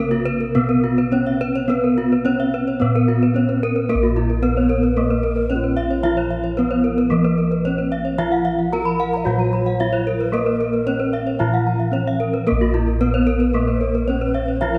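A straight 4/4 pulse at 112 BPM drives this shimmering, brilliant Balinese gamelan excerpt in Bb pelog. A wooden-mallet bronze metallophone carries the airy melody over a softer metallophone accompaniment, while two bright, horn-struck metallophones spin arpeggios, all ringing with the beating of paired tuning. Round, mellow bossed gongs played with padded beaters sit dry and up front as the bass, and from 4.6 s a breathy, hollow bass bansuri adds a second line in the background, all set in a moderate concert-hall reverb.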